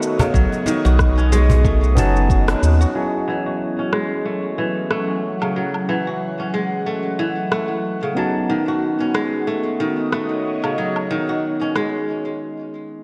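Dark, warm production in a moderate concert hall reverb frames this hypnotic, earthy organic downtempo fragment in F# dorian at 92 BPM, swung on the sixteenths and moving between B7 and F#m7. A crisp, fingerpicked kora rings up front with arpeggios roughened by 12-bit sampler grit and delay, over a breathy, detuned pad with chorus and phaser, plus a layered electronic shaker, woodblock and rim click. A round, deep analog bass, a background electronic kick and a snappy, compressed cajon drive the opening and hit a band accent before the bass drops out at 2.9 seconds, while a barky, lightly overdriven tine electric piano enters at 2.0 seconds and carries on through a break at 12.1 seconds to the end.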